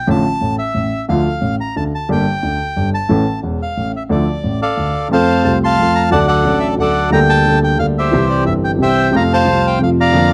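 Tango in 3/4 at 179 BPM, played with a rubato feel, melancholic and dramatic, moving from D minor into F major at 5.1 s in this short cut from a longer piece. A reedy, dark bandoneon carries the melody up front, while a warm grand piano with a vintage character and long sustain supplies smooth accompaniment reaching down into the deep bass. The sound is dry and close, like a 1970s studio recording with a small room reverb.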